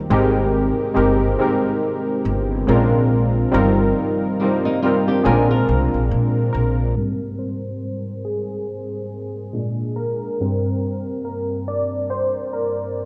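A dark, warm production in a moderate recital hall reverb frames this dreamy, cosy lo-fi hip hop excerpt at 70 BPM with a swung 4/4 feel, where round, detuned analog keys with chorus, cassette tape colour and a low-pass filter carry the chords from Abmaj9 through Bb9 and Eb69/G, a woody, thumpy upright bass plucks gut strings up front until 6.9 s, a dark fingerpicked flamenco guitar with analog delay slips in briefly from 4.4 s, and the keys take a solo from 7.0 s over Abmaj7, Bb7 and Gmadd11.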